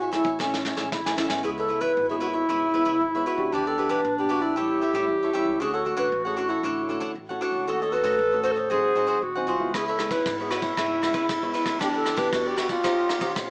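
A straight 4/4 samba-and-choro groove at 116 BPM sets a lively, festive mood in this excerpt from a longer piece, as a vintage brush drum kit with a muffled, rolled-off top plays a fill from 0.4 to 1.4 seconds, drops away, and returns at 9.7 seconds beneath an airy alto flute melody with vibrato and a crisp attack, a dark, soft-attacked clarinet second line carrying slapback echo, bright picked cavaquinho, a thumb-plucked nylon-string guitar in the background and a woody pizzicato upright bass, heard through moderate studio reverb and a small-speaker sound over chords moving from Amaj7 through C#m7 and Dmaj7 to D#13.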